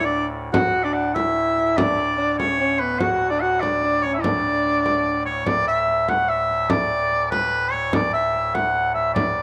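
A bright, vibrato-laden shawm opens this rustic, ancient-sounding medieval dance in a straight 6/8, sitting up front with a soft attack and a distant, roomy folk character. It is joined from the start by a jazz-styled alto saxophone on a mellow second line, with a pipe organ drone voiced like a baroque oboe stop underneath, all three carrying a cassette-tape tint. A frame drum struck with hard hands enters at 0.5 seconds, the saxophone drops out at 5.3 seconds, and a wet spring reverb washes over this homemade cassette recording, which is cut from a longer piece.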